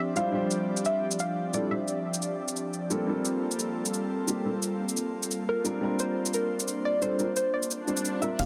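Liquid drum and bass at 175 BPM in a melancholic, soulful mood, where an airy, breathy pad and a dark, boxy grand piano with 12-bit sampler grit carry Dm11, Gm11 and C9sus4 chords under a soft, round, wave-folded pluck melody with delay, as an overdriven kit with bright hats drives the groove in a light reverb, before an electronic swell at 7.8 seconds leads into a menacing detuned saw bass and a knocking kick that enter at 8.4 seconds.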